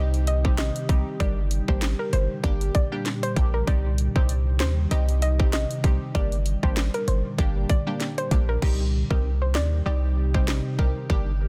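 A dense, heavily limited modern mix with a digital ambience frames this short, sultry dancehall cut, its hypnotic groove carried by a lightly swung sixteenth-note feel. Up front, an electronic island pop drum kit sets a tight kick and sharp snare against dark hi-hats and crash cymbal, entering at 0.1 seconds, while a deep, boomy 808-style bass with a sine body, a noise layer and a mellow decay sits just as prominent beneath it. A glassy, ethereal FM pad holds sustained chords with a slow attack and long release, softened by ensemble chorus and its own reverb and breathing with sidechain pumping. Over this, a punchy chord stab with a vintage sawtooth bite warbles through chorus and phaser, and a soft, round pluck carries the melody, its dark, gentle tone coloured by chorus and digital delay. The harmony rocks between C minor and G minor, and a second section begins at 8.6 seconds before the excerpt ends at 11.5 seconds.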